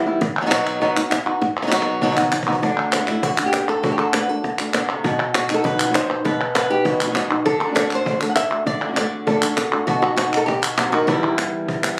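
Flamenco at a brisk 199 BPM in straight 4/4, intense and fiery, cut from a longer piece and captured on a phone in a small room with a moderate reverb and compression. A fingerpicked flamenco guitar carries the melody up front from the start, joined almost at once by a woody, soft-handed cajon with faint snares and crisp, dry palmas hand claps close to the ear. The cajon plays a fill between 1.4 and 2.6 seconds, after which a second, dark and boxy thumb-plucked guitar enters with stabs and audible finger squeak over chords moving among B, D and a closing Em.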